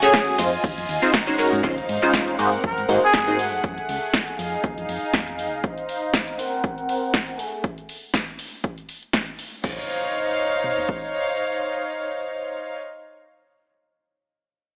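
A detuned sawtooth polysynth comp, chorused and phased, accompanies this funky, sunny slice of filtered disco house at 120 BPM in Db major, pumping against the sidechain beneath a clear jazz-style trumpet section that carries the melody only until 3.4 seconds while a rich, earthy chamber violin section holds sustained chords through 12.8 seconds. A punchy, tape-toned house kit of kick, toms, snare, hi-hat, ride, crash and cabasa drives the swung groove with small-room ambience, and a dark, round hollow-body electric bass sits low from 0.4 to 5.6 seconds, with a very quiet electronic impact arriving at 1.6 seconds during a long filter sweep. Chords move from Fm7 through Dbmaj9, Ab9 and Gbmadd9, and the overall sound is dry and gritty with transformer saturation and an AM-radio tint under light reverb.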